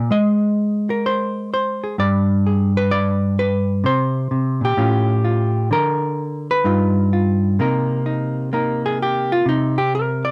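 Smoky and moody, this short excerpt of solo jazz in C minor swings at 128 BPM in 4/4 as a clean, fingered hollow-body electric jazz guitar, dark and up front with light reverb, moves through chords such as G, Gmadd11, Aaug7 and G7b13 before settling on Cm7 at 7.6 seconds, where its solo passage begins and runs to 10.3 seconds.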